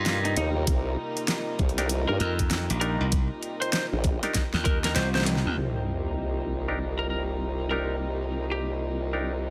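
A short cut from a funky, swaggering glitch hop track in C minor at 98 BPM with a swung 16th feel opens on a Cm7 chord: distant bowed chamber strings pump alongside a dark, warbling lo-fi pad in the background while a bright, punchy slap bass sits up front. A wobbling formant-filtered bass with chorus and overdrive, a twangy, slightly broken-up lead guitar with 12-bit grit and digital delay, and hollow, nasal clav stabs fill the arrangement, driven by an overdriven, layered kick and a dubstep kit with a huge snare that plays a drum fill leading into a band accent. At 5.6 seconds the slap bass and drums are gone and a sub drop impact rumbles beneath the remaining parts, the mix set in light digital ambience.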